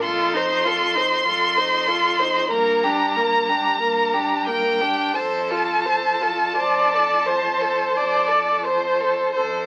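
Classical string quartet music, a slow romantic movement moving at roughly 42-50 BPM in 4/4 with a flexible, rubato feel, heard here as a short extract from a longer piece. The mood is lyrical and warm, with the harmony passing from F7 to Gm and settling on F around 5.2 seconds. Up front, the first violin sings the melody high in its range with clear, smooth tone and even vibrato, while a close second violin carries a lower second line in the same polished manner. The viola, also forward in the balance, fills the accompaniment with a rich, focused sound and a smooth top, and a distant cello plays the bass softly beneath. The performance sits in a moderate studio reverb, but it comes through as a very old 78 rpm record, with vinyl crackle laid over the strings.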